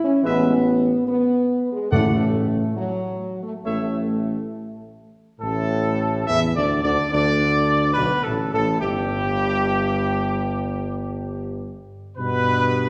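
A mellow French horn section opens this solemn, majestic classical brass fragment with sustained chords, joined at 0.2 seconds by an up-front trumpet section carrying the melody with light vibrato, a clear trombone section holding chords in the background and a warm, distant tuba on the bass, while timpani struck with hard mallets sound close and dry from 1.9 to 3.2 seconds, the brass ringing in the wet reverb of a recital hall.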